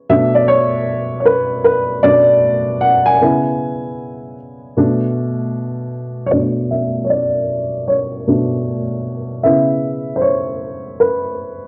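A dark upright piano carries this short hip hop excerpt alone from start to finish, its mellow, woody tone sitting up front with a short sustain and a soft, low-passed edge from cassette tape. The groove moves at 77 BPM in 4/4 with a 65% swing on the 16th notes, setting a hazy, nostalgic mood in B dorian. The harmony drifts through Bm9, C#m7 and Bm7, with the piano ranging from B2 up to G#5. A moderate spring reverb and small room ambience give it the feel of a home recording on cassette. The passage falls into two parts, the second beginning at 6.3 seconds and returning to C#m7 at 9.4 seconds before the clip ends at 11.7 seconds.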